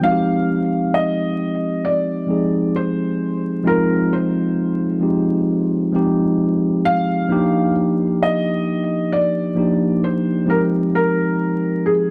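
Nostalgic and melancholic, this short excerpt from a longer hip hop piece moves at a slow 66 BPM in 4/4 with a swung sixteenth-note feel, set in F dorian and tuned slightly sharp at A4 = 441 Hz. A mellow tine electric piano carries the accompaniment up front, its clean, direct tone given a cassette-tape and low-pass treatment, while a felt-muted upright piano sings the melody above it in a soft, intimate voice with audible action noise, also low-passed. Light reverb, small room ambience and vinyl crackle surround the two pianos as the harmony drifts from Fm7 to Ebmaj9 at 7.3 seconds and settles on Fm9 at 10.5 seconds.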